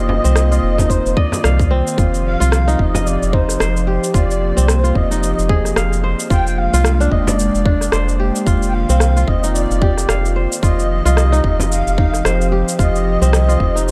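Organic downtempo at 111 BPM in 4/4, this meditative, earthy passage from a longer piece sits in F dorian with a loose 16th-note swing, moving from an opening Eb5/F through Fm7, Bb7/F and Ebmaj7/F before settling on F7(no3). A breathy, flute-like synth lead carries the melody between C5 and G5, its soft attack and vibrato dressed in ensemble chorus, digital delay and shimmer reverb. Beneath it, a fingerpicked kora rings out crisp arpeggios through delay and its own shimmer reverb, while a warbling, nostalgic tape-like pad holds slow-attack chords that pump with sidechain compression. A round, deep analog bass sits up front between F1 and C2, joined from 0.3 seconds by a small-room electronic shaker and rim click and from 0.8 seconds by a tight, tape-warm electronic kick. A close, dry frame drum plays in the background at the start until 3.0 seconds, returning only in brief touches later, all within a dark production with light digital ambience.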